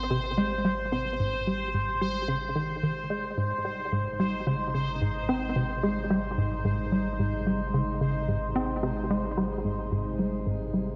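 A wet, echo-heavy mix steeped in spring reverb opens this cosmic, expansive excerpt of ambient, sequencer-driven space music at 110 BPM in Ab major, where a punchy, wave-folded analog bass riff with tape echo rides over a round sine sub bass, a bubbling stepped-filter texture with resonant random filter steps sits up front, and a detuned, evolving pad holds a sustained Abmaj7 chord in shimmer reverb while it fades in and the bass's filter sweeps across the full 11.0 seconds.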